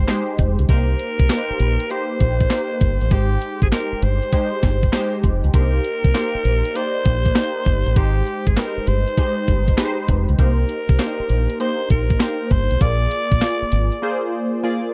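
A raspy, gritty alto saxophone leads this slick, bouncy new jack swing excerpt in C minor, carrying the melody between G4 and D5 with vibrato and a bright pop-style solo tone. Beneath it, analog keys built from detuned sawtooth sounds add a round accompaniment with a fast attack, decaying notes, an evolving filter sweep, and chorus and phaser colouring. A deep, dark dub bass, fingered and amped, sits up front with the drums and leans harder into the mix than the sax and keys. The crisp 8-bit drum machine brings in a thumpy kick, a medium-tuned snare, hi-hat and handclaps at a sampler-style, tape-softened edge, swinging its 16ths at 99 BPM in 4/4. The harmony moves between Abmaj7 and Cm7 before turning to Bb7 at 12.8 seconds, and a short break from 14.0 seconds leaves the saxophone and keys to carry the final moment. The whole recording is dry and close, in a 1970s studio style, tuned slightly flat to A4 = 438 Hz.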